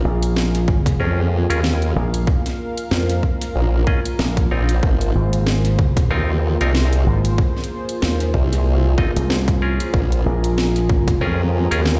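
Booming through a big sound system in a bare stone room, this funky, swaggering glitch hop cut at 94 BPM with a swung 16th-note feel rides on an up-front formant-sweep wobble bass with chorus and a growly, punchy slap bass through an envelope filter, while an overdriven electronic kick entering at 0.7 seconds and a drum and bass kit with cracking snare and bright hats drive beneath hollow, nasal clav stabs soaked in tape echo, a mellow, detuned analog pad carrying vintage 12-bit sampler grit and sidechain pumping, and a very quiet, dark ambient pad, all moving through Bb7(no3), Ab69 and Bbm7.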